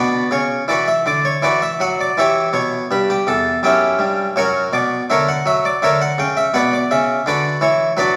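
In a flexible, rubato triple metre, this short excerpt from a baroque-style suite movement for solo harpsichord unfolds with a serene, radiant mood. The Italian-style harpsichord sits up front with a brilliant, plucked, mid-forward tone, its octave strings adding shimmer across a range from deep bass to high treble. A wet recital-hall reverb surrounds the instrument, giving it the resonance of a church or concert hall.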